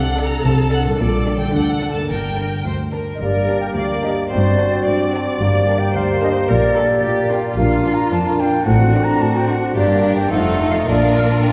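A pure, expressive concert flute stands out in this playful, whimsical film cue, entering at 3.1 seconds with a soft-attacked second line. The mood is sneaky and quirky, in a straight two-beat metre, and the passage is cut from a longer piece. A rich, focused chamber violin section with vibrato carries the melody, while a second violin section adds an intense background line and a close, bright viola section supplies accompaniment. Beneath them, smooth cello and double bass sections hold the bass, and a ringing, fingerpicked concert harp plays arpeggios from the start. Once the winds join, a close-miked clarinet, a distant, roomy bassoon and a mellow French horn section holding sustained chords fill in the background, and a sparkling, bell-like glockenspiel with brass mallets joins the melody at 11.2 seconds. The ensemble sits in a lush scoring-stage reverb, heard from further back in the room.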